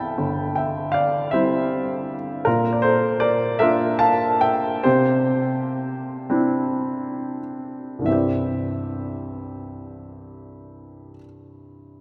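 A baby grand piano, warm and up front, plays alone from the start of this peaceful, lyrical classical piece in C major and 6/8, tuned to A4 = 438 Hz, moving with free rubato at a slow 30-54 BPM and slowing from 2.5 to 8.1 seconds as its harmony passes from Cmaj7 through Bb to Cadd9, its notes spanning G1 to B5 and ringing into a vast cathedral reverb with a 5.3-second tail, before a new section begins at 8.1 seconds in this fragment cut from a longer work.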